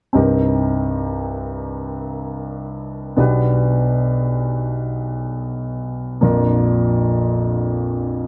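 A grand piano sits up front, its tone warm, present and polished, carrying this short pop fragment of a longer piece on its own. It plays an accompaniment role, ranging from Bb1 up to B4, and sounds from 0.1 to 8.3 seconds. The harmony moves from Cm7 to G/B at 3.2 seconds and settles on Bb near the close. The mood is longing and emotional. A light reverb gives the recording a gentle sense of space around the piano.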